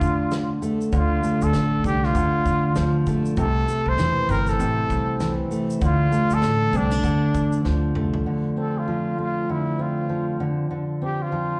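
Acoustic pop in D minor at 98 BPM, with a gentle 16th-note swing and a wistful, tender mood, this short excerpt is cut from a longer piece and heard as a live club performance through the venue's PA, with light reverb and small-room ambience. A breathy, whispered trumpet carries the melody between D4 and C5, close-miked and intimate with vibrato, a soft attack and a slapback echo. A full-bodied, fingerpicked jumbo steel-string guitar sits up front as accompaniment throughout, moving through Dm, Am and Dm before shifting to Dm7 and a rootless Bbadd9/D. A woody pizzicato upright bass and a natural country drum kit of punchy kick, fat snare, shaker and toms support the opening; a drum fill runs from 7.7 to 8.3 seconds, and bass and drums drop away as it ends. From 8.3 seconds the trumpet and guitar continue as a duo until the end at 11.6 seconds.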